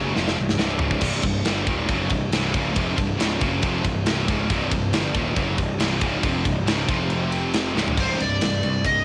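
Relentless and heavy, this short heavy metal excerpt, cut from a longer piece, drives forward in a straight 4/4 feel. A pair of high-gain distorted guitars play a bright, picked riff set back in the mix, while a growly fuzz bass with overdrive digs in beneath them. The tight metal drum kit sits up front with a big-room sound, crisp cymbals, a medium-tuned snare and a punchy kick, opening with a fill at 0.2 seconds and adding another at 7.8 seconds. Underneath it all, a very quiet, shimmering chorused pulse-width pad holds slow-attack retro chords over a Cm harmony that moves to F5 and then C5. At 8.0 seconds a high-gain lead guitar steps up front with a short melody high above the riff. The light reverb and cassette home-recording character give the guitars and drums a gritty, lo-fi edge.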